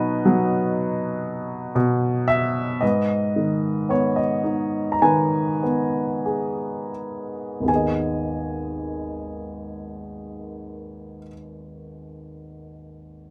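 Wistful and reflective, this brief excerpt of lyrical classical solo piano unfolds in a free, rubato 4/4, easing and slowing through its first 7.7 seconds. A single upright piano carries everything from 0.0 to 13.3 seconds, ranging from a deep G#1 up to A#5. Its tone is woody and vintage, with long sustain and a smooth, intimate character, and the noise of its action can be heard beneath the notes. The harmony shifts from a B chord at the opening to G# minor at 2.8 seconds, deepening the melancholy as the passage moves through three short sections. Close, detailed microphones place the instrument up front, framed by a light reverb, and the passage is cut from a longer piece.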